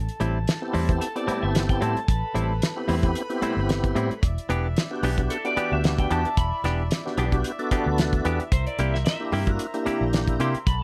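Lightly reverberant, this mournful, smoky straight-eighth soul blues in E minor moves at 112 BPM over Am7, Em7 and C7, with a dry, fat-snared 70s drum kit and a round, foam-muted vintage bass up front, a compressed, twangy, direct-recorded clean electric guitar soloing throughout, a full tonewheel organ with slow rotary speaker, overdrive and chorus vibrato joining at 0.6 s, a slightly broken-up, lo-fi second guitar with spring reverb entering at 1.0 s, and a loose, jazz-style horn section holding sustained chords with light vibrato further back in the mix.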